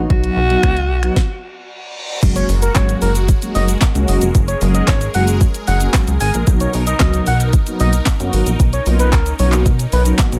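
This upbeat, euphoric dance-pop excerpt at 113 BPM in F# major opens with mellow synth brass and a plucky, funky analog bass, both pumping with sidechain, while a smooth R&B drum kit of soft kick, sharp snare, snaps, claps, shaker and hats joins and a raspy, gritty alto saxophone sounds a brief F#4 through delay. A stop at 1.2 seconds gives way to a background reverse cymbal and impact. At 2.2 seconds the drop brings a bright, phased supersaw swell of sustained chords under an expressive synth lead with vibrato, sub octave and delay, moving from F#add9 to Bmaj7 at 6.5 seconds in a dry mix.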